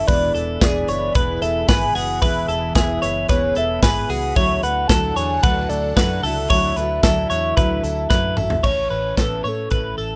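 A straight 4/4 groove from a polished, up-front studio drum kit drives this breezy, youthful slice of jangly indie pop, with punchy kick, medium-tuned snare, bright cymbals and toms joined by a very quiet, jingly tambourine. A warm, fingerpicked steel-string dreadnought guitar and a round, foam-muted electric bass, dark and amped, anchor the harmony as it moves from E to Dadd9 and then to A. Up front, a clean, compressed twelve-string electric guitar picks arpeggios, while a soft, full synth lead with a sub octave carries the melody, its triangle and sine tones colored by chorus, phaser, vibrato and digital delay. In the background, a lush, thick, detuned pad of sawtooth and square waves holds sustained chords through chorus and phaser until 8.6 seconds, just as a drum fill from 8.1 seconds leads into a new section. The rough home-demo mix is dry, with little reverb, and the passage is cut from a longer piece.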